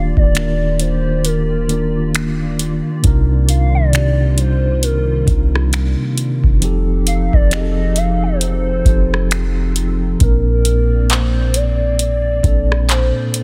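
A slow 4/4 groove at 67 BPM with a 16th-note swing sets this moody, sensual contemporary R&B clip, cut from a longer piece, where a booming analog drum machine enters at 0.2 seconds with a deep kick, metallic hats, finger snaps, handclaps and rim clicks, its snare softly clipped and its tone tape-warm and up front. Beneath it, a clean 808-style bass sits just as forward, a dark sine that hits with a fast attack and decays, stopping at 13.1 seconds. A mellow tine electric piano, heard as if through built-in speakers, carries the accompaniment through chords that move from Ebmaj9 to Cm11 and F7 before settling on Bbmaj9 at 10.2 seconds, where the arrangement shifts into a new section. A hollow, flute-like pad with a vintage warble holds sustained chords with slow attack and long release; treated with ensemble chorus and sidechain pumping, it sits soft in the background. On top, a smooth, detuned lead glides between notes with portamento and vibrato, coloured by chorus, phaser and delay. 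The mix is dense and heavily limited, set in a digital ambience.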